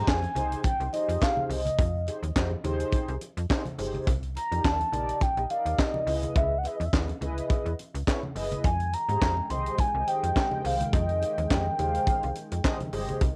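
Recorded at home onto cassette with a light reverb, this short cut from a longer early-eighties boogie funk track has a late-night, danceable glow and a gentle swing on the sixteenths. A funk kit sits up front with a high-tuned snare, tight kick, hi-hat and handclaps carrying a touch of tape character, while very quiet congas with thick skins add a live-room texture underneath. The slap-like FM bass is snappy and metallic, its fast attack decaying beside the drums. A mellow, horn-like synth lead with vibrato and a warbling, vintage tape tint carries the melody over round, dark synth brass that plays chorused accompaniment with a filter sweep and ring modulation. At 8.6 seconds a smooth analog pad enters in the background with soft, sustained chords as the harmony returns to Fm9 after passing through Cm9 and Dbm9.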